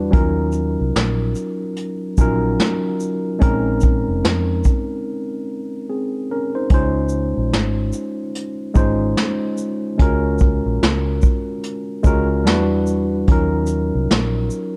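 Brushed drums sit up front in this melancholic, reflective lo-fi hip hop excerpt at 73 BPM in Eb dorian, with a punchy kick, a medium-tuned snare, hi-hat and shaker swung on the sixteenths. A worn, slightly out-of-tune tine electric piano with a cassette-tape tint moves through Ebm9, Bbm11, Dbmaj9 and Gbmaj9 over a dark, round, foam-muted fingered electric bass. Light reverb and small room ambience frame the groove, which includes a brief break from 5.1 to 6.7 s.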